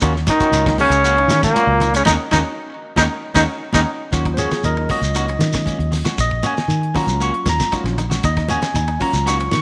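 A straight afrobeat groove in 4/4 rides on a damped 70s drum kit with a fat snare and tight kick, joined by a round, up-front fingered bass, thin-skinned congas and a grainy, band-limited shekere. Underneath, a barky tine electric piano, lightly overdriven through a combo amp, comps over an Ebm7 harmony, while a woody koto plays fingerpicked arpeggios with tape echo and a clean electric guitar adds picked stabs further back. From 0.3 to 3.8 seconds a forceful, bright trombone carries the melody with vibrato and scooped notes, shadowed by a very quiet, brilliant trombone section and a raspy, gritty tenor saxophone on a lower second line. A drum fill and a band accent punctuate the passage before the horns give way, and at 4.1 seconds the electric piano takes a solo. The mood is defiant and hypnotic, set in a small room with a moderate echo chamber reverb, and the clip is cut from a longer piece.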